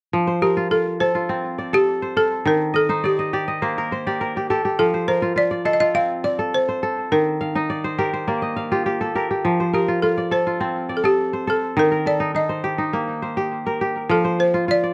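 A dry, close studio sound in a 1970s style, touched with light reverb, frames this hypnotic, warm West African traditional piece, cut from a longer work and moving at 103 BPM in a straight 4/4 in F mixolydian. Up front, a bright, crisp kora rings out fingerpicked arpeggios through a tape echo, adding fills at 2.8 and 7.4 seconds, while a woody, buzzing balafon struck with hard rubber mallets carries the close-miked, full melody. The harmony simply rocks between F and Eb throughout.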